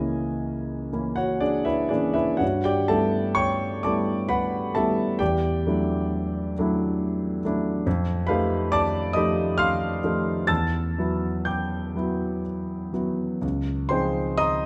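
A concert grand piano plays alone from the first moment in this serene, luminous impressionist classical excerpt, moving in a rubato 3/4 at roughly 58-72 BPM. Its tone is intimate and up front, with deep bass and audible action noise, set in a moderate recital hall reverb. The harmony drifts through lush extended chords, from C#m6 through Em11 and F9 to a closing C#maj9 at 13.4 seconds.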